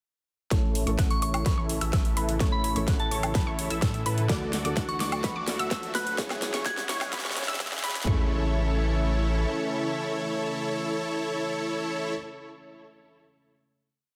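From 0.5 s, an uplifting festival progressive house build starts all at once: a punchy four-on-the-floor kick with floor toms and a drum fill, metallic programmed hats, woodblock and a huge snare backbeat, a saturated sine sub bass, a thick, detuned supersaw riff of pulsing gated chords under a filter sweep, a bright unison pluck doubling the chords an octave higher, and a muted, boxy felt piano holding close chords with syncopated pushes in the background. A chorused, slow-attack pad and a soft, warbling FM bell playing short answering phrases soon join, followed at 4.9 s by a very quiet riser, while sidechain pumping moves the pad, pluck, supersaw, bass and piano and tape echo trails the piano, pluck, supersaw and bell in a dense, heavily limited mix bathed in a lush hall reverb. The drums drop away at 8.1 s for a euphoric final chord, and the mellow piano is the last sound, holding alone until 14.2 s.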